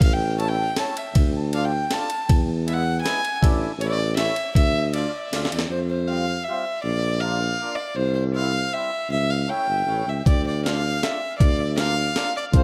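In a loose, rubato waltz time, this jolly, festive alpine dance band excerpt sets a dark, woody bowed fiddle melody with light vibrato and tape echo up front over a present tuba bass and a reedy, mellow accordion that joins at 0.4 seconds, while a gritty, compressed breakbeat kit with a thumpy kick and high-tuned snare plays a fill that ends at 5.7 seconds, falls silent, and returns at 10.3 seconds, all within an echo-heavy mix with light reverb and small-room ambience.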